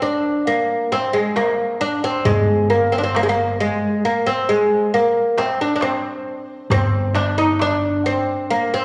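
Melancholic and full of longing, this short cut from a longer piece is an Arabic maqam ensemble in G maqam kurd, moving at 135 BPM in eighths through a straight 10/8 metre, tuned to A4 = 441 Hz. The oud opens at 0.0 s and carries the melody between Ab3 and Eb4, its bright, plectrum-plucked, fretless double strings sounding woody and deep, placed up front in the mix. A metal-shell darbuka joins at 0.9 s, crisp and large, sitting in the background with a live-room quality. The upright bass enters at 2.2 s and plays on G1, pizzicato on steel strings with a growly, thumpy, warm tone. A wet large studio reverb with a 1.5 s decay surrounds the ensemble through this single section, which runs until 8.8 s.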